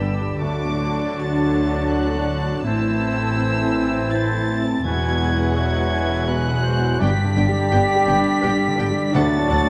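Moving in a flexible, rubato triple metre, this tender, moving cinematic passage is cut from a longer piece and unfolds over a gentle progression from D through Am and Eadd9 to G before returning to D. A chamber violin section carries the high melody with light vibrato and a soft, sul tasto touch that feels intimate and close. Around it, a clear oboe, an airy, mellow flute ensemble, a distant, roomy clarinet and a dark studio violin section weave background second lines. A woody, lush viola section sits very quiet beneath a baby grand piano and a French horn section holding sustained chords with a smooth top. The cello and double bass sections anchor the bass with a pure, floating, distant tone, and the timpani enters at 7.0 seconds, struck with hard mallets for an articulate, close sound. The whole is bathed in a wet scoring stage reverb with a dark, warm production.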